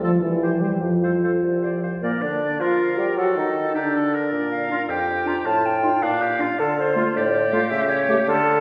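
This is a quick, classical-period movement for wind quintet in G minor, lively and graceful, moving at 105 BPM in a straight 6/8 counted in dotted quarters. A silver concert flute carries the melody with a pure, metallic tone, crisp attack and expressive vibrato, heard at some distance. A warm, roomy oboe shapes the second line beneath it. A clear, soft-edged clarinet and a mellow French horn fill in the accompaniment, while the bassoon holds the bass up front with a light vibrato. All five play from the start; the clarinet and horn stop at 8.2 seconds, and the flute, oboe and bassoon carry on to the cut at 8.6 seconds. The harmony moves through chords such as Gm/Bb, D#dim, Bb, F/A and Dm before ending on A7/C#, and the whole passage sits in the lingering reverb of a recital hall, like a church or concert hall, as a fragment cut from a longer piece.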